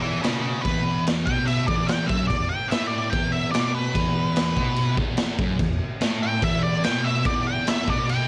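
A straight 4/4 pulse drives this rowdy, raw garage rock excerpt, cut from a longer piece and captured as a home recording on cassette with light reverb. A dark octave-fuzz lead guitar takes a solo over the whole clip while a bright, double-tracked fuzz guitar grinds out a low riff beneath it, both picked, distorted and up front. From 0.2 seconds a raw garage drum kit with a punchy kick, a medium-tuned snare and crash cymbal joins in, its saturated, gritty sound pumping in a bright stone room with a rolled-off top.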